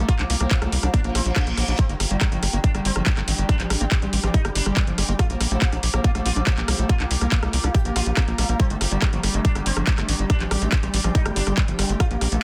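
Intense and driving, this psychedelic trance excerpt in G minor runs at 141 BPM in a straight 4/4, with a tight, up-front electronic kick and a small-room drum kit of handclaps, rim clicks and metallic hats pushing under a punchy, saturated sequencer bass. A bright, buzzing sitar carries the melody through phaser, pumping and dub echo, while a squelchy, gritty acid bass riff sits in the background with tape echo, alongside an overtone-sweeping drone with chorus, reverb and phaser. A very quiet, ethereal pad adds airy texture, and a reverse cymbal appears from 1.1 to 1.8 seconds in a dense, heavily limited modern mix.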